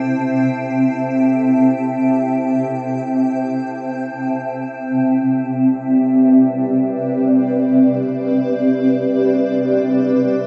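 A granular cloud pad plays alone throughout this weightless ambient fragment in free time and C major, its detuned, blurred sine tones spanning C4 to A5 with slow attacks and long releases, moving from a rootless D7(no3)/C to Cmaj7 at 4.6 seconds, set up front in a wet plate reverb of 3.0 seconds within an echo-heavy mix colored by dub echo.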